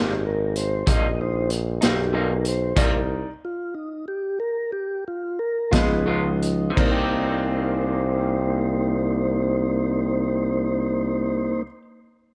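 Brooding and mournful, this slow blues in 12/8 at 56-64 BPM in C minor features a soft, flute-like tonewheel organ through a slow rotary speaker that solos over the opening 6.8 seconds as the music slows down and briefly stops from 2.8 seconds, above a scooped, lightly vibrato tuba bass, a slightly broken-up guitar with harmonic tremolo, a clear vintage grand piano in the background, and a gritty, boomy garage drum kit that enters at 0.6 seconds, all in a small, lightly reverberant room.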